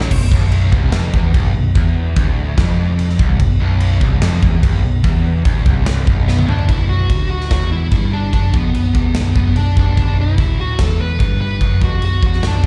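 Hard rock with a driving, heavy feel, heard as a live club gig through the venue's PA, with a cranked stack guitar riffing brilliantly over a sludgy, slapback-echoed distorted guitar sitting in the background. A growly, overdriven picked bass and a big, up-front rock drum kit with crashing cymbals, a punchy kick, snare and toms carry the weight. With a drum fill at 6.3 seconds, a dark, smooth lead guitar with slapback echo takes the melody, while the stack guitar drops out at 6.7 seconds.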